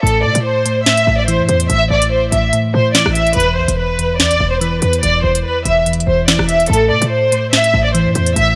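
A lush, bowed violin section sits up front with expressive vibrato, carrying an ominous melody through a low-pass filter in this dark drill cut from a longer hip hop piece, set at 144 BPM in a half-time feel in A minor over Am, E5 and back to Am. Beneath it, soft, round electric-piano-like synth keys add mellow chorused accompaniment, while a short, punchy 808-style bass delivers tight, decaying hits. An electronic drill kit with a sharp snare, crisp hi-hats and rim clicks stays prominent in a light digital ambience.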